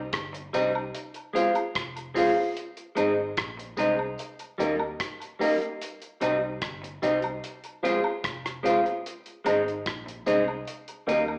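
A clean, hollow-bodied semi-hollow electric guitar sits up front in this sunny, laid-back roots reggae excerpt, its picked accompaniment bathed in spring reverb. A mellow concert grand piano adds smooth, short-sustained stabs with a deep, vintage bottom, while a round, foam-muted fingered electric bass with an amped, shadowy tone holds the low end beneath them. A tight-kicked, damped 70s drum kit keeps a straight 4/4 on hi-hat, kick drum and rim click with a dry, airy, polished sound, and tambourine and woodblock sit close and in the background with tape echo. The harmony cycles through Cm, Fm, Ab and Eb. The band plays live in one large, wet-sounding room, and vinyl crackle and an AM radio sound color the whole recording.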